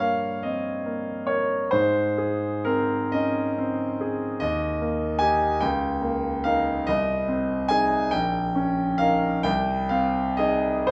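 Serene and tender, this brief fragment of a romantic classical nocturne moves in a slow, rubato 6/8 at 40-50 BPM in Ab major. A solo concert grand piano, bright, brilliant, open and up front with deep bass and long sustain, ranges from Bb1 to Ab5, its harmony settling on Ab/C at 9.4 seconds. A moderate recital hall reverb places the instrument in a natural sense of space.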